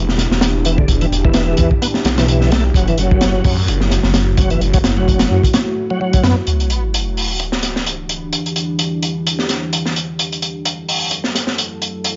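A swung, crunchy breakbeat kit with a punchy kick and high-tuned snare drives this funky, raw breaks cut, as a swirling phased saw bass and an overdriven, key-clicking tonewheel organ riff with slow rotary and dub echo fill the first half, a sub drop hits at 6.5 seconds, and a deep, moody ambient pad with chorus and sidechain pumping sustains Em7 and F#m7 chords underneath throughout, all in a small, dark room.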